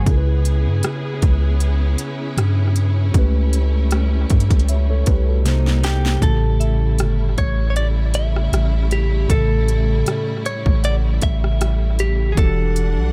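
Contemporary R&B at a slow 78 BPM with a late-night, sensual mood, built on a mellow tine electric piano, lush bowed symphonic strings, a deep sine 808-style bass and a crisp trap kit with a hard-clipped kick, where a drum fill at 5.5 seconds leads into a clean, compressed direct-recorded electric guitar melody with analog delay from 5.8 seconds and a woody, round FM synth pluck tucked in the background from 6.6 seconds, all set in an echo-heavy digital ambience over chords moving from C#m7 to a closing Em9.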